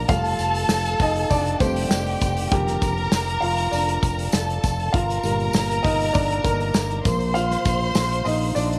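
Anthemic and uplifting, this piano-driven pop piece in Bb major moves at 99 BPM in a straight 4/4, with a dark, mellow concert grand taking the lead from 0.0 to 8.8 seconds over chords of Fadd9, Bb/F, Gm and Bb, while a lush, expressive bowed violin section with vibrato carries a second line, a punchy, bright fingered electric bass anchors the low end, a loose acoustic indie drum kit of hi-hat, punchy kick and medium-tuned snare keeps time, and a jingly tambourine sits in the background, all set in moderate spring reverb and small room ambience.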